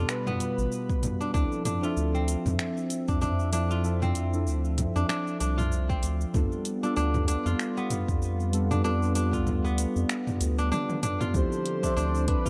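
A swung 96 BPM downtempo groove in D dorian sets a hypnotic, earthy mood, as a deep house kit of cabasa, finger snaps, hi-hat and toms and a layered electronic kick (entering at 0.9 s) play alongside a round, up-front analog bass, while crisp fingerpicked kora arpeggios with tape echo, a smooth warbling pad, muted felt-like synth keys from 1.3 s, a dark bronze singing bowl in the background and a breathy flute-like lead with tremolo, heard at the start and again after a drum fill at 11.3 s, drift over G9 and Dm9 chords in light digital ambience.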